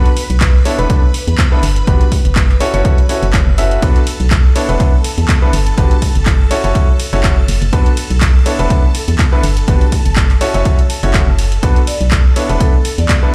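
Played back through a big sound system in a bare room, this excerpt carries a large studio reverb around otherwise dry parts. It is a soulful, bittersweet piece of piano house with a light swing on the sixteenths, built on a repeating cycle of E7sus4, Gmaj7, F#m7 and Bm7. A clear, polished concert grand plays the riff with deep bass and long sustain, touched by digital delay. Beneath it, a hollow, organ-like FM bass with a fast, decaying attack pumps against the sidechain. Further back, a shimmering, vintage string machine holds bright sawtooth violin chords, and both parts carry that same pumping. A punchy, tape-warm drum machine supplies handclaps, hi-hat and ride cymbal, with a punchy electronic kick sitting up front, both re-recorded in a small room. At 11.9 seconds, a metallic, ringing vibraphone played with medium mallets and its motor off adds a short delayed melody.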